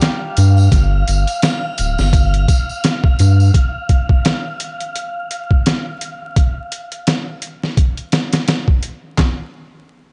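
Hypnotic and smoky, this short trip hop fragment opens on a Gm7 chord, with a gritty, pitched-down sampler-style drum kit up front, its thumpy kick, snare, hi-hat and handclaps carrying studio reverb and running to 9.4 seconds. A nasal harpsichord in the background, treated with harmonic tremolo, a low-pass filter and tape echo, sounds from the start and briefly overlaps with a round, deep analog bass with tube saturation that enters at 0.4 seconds. Distant tambourine and triangle drift beneath until the harmony drops away at 3.5 seconds, while a breathy, wind-like tuned noise texture lingers until 6.4 seconds, all under a layer of vinyl crackle.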